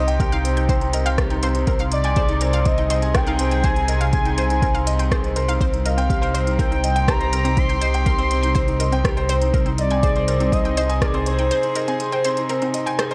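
Moving and hypnotic, this excerpt of piano and strings electronica at 122 BPM sets a velvety chorused synth lead melody over sul tasto string quartet chords, a felt-muted upright piano riff with tape echo, a dark detuned saw bass pumping to the sidechain until 11.5 seconds, a bright pluck arpeggio in the background with chorus and echo, an overdriven deep kick and crisp hi-hat and rim click from an organic electronic kit, all moving between Cm and Ab/C in light digital ambience before a break at 11.5 seconds.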